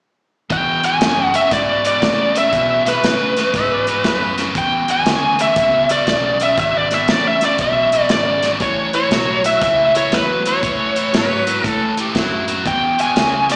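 Electric blues shuffle at 118 BPM in E mixolydian, laid-back and soulful, where a smooth, up-front overdriven lead guitar sings the melody over a biting guitar riff, a dark, round, foam-muted fingered bass and an airy country drum kit with a punchy kick, with slapback echo on both guitars and the drums, while a mellow, distant harmonica with scooped notes slips in at 3.6 and 11.2 seconds and the harmony moves from E to A at 8.6 seconds and back to E at 12.7, all heard as a live gig through the venue's PA with a small-speaker sound and light recital-hall reverb.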